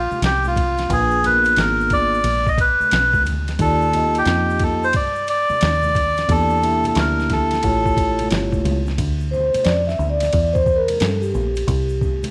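Swung sixteenths roll over a 4/4 groove in this mellow, smoky jazz-hop excerpt, where a gritty, pitched-down boom bap kit with a thumpy kick and tape-warm hi-hat, snare and ride sits over a dark, round, foam-muted fingered electric bass, while congas and egg shaker ring softly in the background of a large room. A reedy, breathy melodica with slapback echo carries the melody up front until 8.3 seconds, as soft-mallet vibraphone rings beneath it through jazzy chords. At 9.0 seconds the metallic vibraphone, played with the motor off, takes a solo over the final stretch, all under light reverb.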